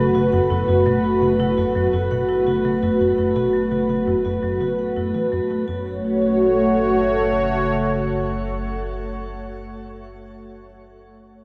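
This ambient, sequencer-driven space music opens on an F# minor chord at 84 BPM in a straight 4/4, with every part sounding at once in a mysterious, cosmic haze cut from a longer piece. Up front, a sweeping resonant pad holds sustained chords, its detuned sawtooth body and sub octave blooming through a slow-attack filter swell, dressed in chorus and shimmer reverb. Beneath it, a tight sequencer bass drives a punchy riff of plucked, fast-attack, decaying sawtooth and square tones with subtle chorus and delay, while a deep analog drone on a low F# warbles with a vintage, wave-folded, tube-saturated character. Quieter still, a vibraphone struck with hard mallets spins bright, metallic arpeggios with motor vibrato, trailing delay and shimmer. The bass, vibraphone and drone all fade out over the opening stretch, and the bass and vibraphone stop at 6.0 seconds, leaving the drone until 7.8 seconds and the pad alone until 9.3 seconds. 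Everything sits in a huge, wet reverb with a long tail and the soft grain of cassette tape.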